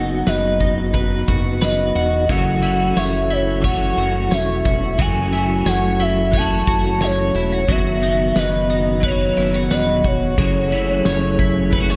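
A hollow, woody synth lead carries the melody over a mellow tonewheel organ with fast rotary shimmer, warm, clean twelve-string guitar arpeggios, a fat detuned analog bass and a loose indie drum kit with a punchy kick and dark cymbals, joined at 2.3 seconds by a scooped, tremolo-treated clean guitar, in a hazy, ethereal dream pop excerpt at 89 BPM in F# dorian moving from B to F#m7 under light reverb.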